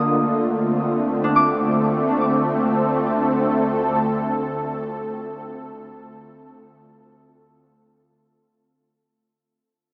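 Luminous and weightless, this free-time ambient fragment rests on a single Dm7 chord and fades out across its 8.9 seconds. A smooth, detuned sawtooth analog pad with chorus sits up front holding sustained chords, while a concert harp rings out fingerpicked arpeggios through a diffuse delay until 6.6 seconds, and a bowed double bass section with gut-string tone and light vibrato holds a D in the background. The music floats in a vast, echoing space drenched in huge reverb, yet it carries a small-speaker sound.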